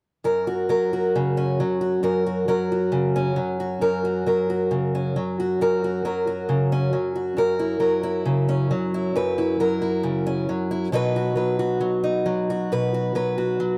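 In a straight 4/4 feel, this peaceful, nostalgic folk fragment, cut from a longer piece, features a warm fingerpicked acoustic archtop guitar playing solo and up front from 0.2 to 13.8 seconds, moving from F# to F#7 and then to B, ranging from F#2 to B4, and bathed in a wet spring reverb that places it further back in the room.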